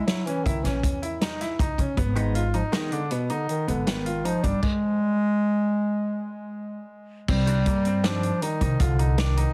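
Driving along in straight 7/4 at 158 BPM, this intricate progressive band piece rides on a vintage drum kit with a punchy kick and rolled-off top, joined by a woody, thumpy pizzicato upright bass. Up front, a mellow, smooth-toned bass clarinet carries the solo melody with a touch of delay, while a bright concert grand piano plays arpeggios and a dark, clean hollow-body jazz guitar adds picked accompaniment in the background at 2.2 and 7.5 seconds. Light reverb and a heavily compressed, radio-like sound frame the harmony as it moves from Dbmadd9 and Abm through a chordless passage to Cmadd9.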